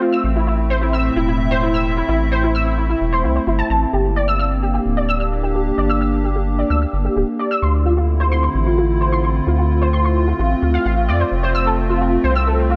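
Intricate and eerie, this IDM excerpt sets a hollow, airy, flute-like pad carrying sustained chords with chorus and vintage 12-bit sampler grit beneath warbling, dusty, lo-fi plucked arpeggios washed in ensemble chorus and tape echo, while a round, deep, nasal analog bass with tube saturation enters at 0.2 s under a progression of Am, Gm, Dm7 and F, all set in a dark production with light reverb.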